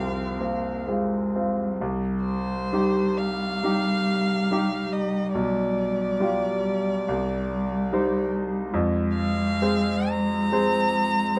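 Elegiac and yearning, this slow romantic movement for piano trio in C minor unfolds in a rubato 4/4 at around 62-74 BPM, tuned to A4 = 435 Hz and cut from a longer piece. A rich, focused violin carries the melody up front with vibrato, while a smooth, even cello sings a second line beneath it and a bright, brilliant concert grand supplies present accompaniment with deep bass. Light reverb and a dark production frame the trio, and the music settles into a new section at 1.8 s, its harmony moving through F minor, C minor and G7/B.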